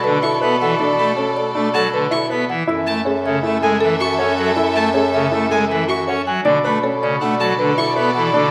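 This is a short cut from a classical minimalist pattern piece, hypnotic and urgent, moving at 159 BPM in a straight 5/4. A woody, buzzing marimba carries the melody from the background with hardwood bars, while a hollow, airy alto flute plays a second line on a single pitch behind it. Up front, a majestic full pipe organ with brilliant mixtures supplies the accompaniment, and a worn concert grand piano with deep bass and short sustain plays arpeggios alongside it. A bright, vintage-toned bass clarinet anchors the bass, a distant string section sustains smooth chords with vibrato, and a single bowed violin adds its own arpeggios up high from 0.2 to 7.9 seconds. The harmony moves from Bm9 to F#m7 at 2.7 seconds and back to Bm9 at 6.5 seconds, all set in a recital hall with a noticeably wet reverb.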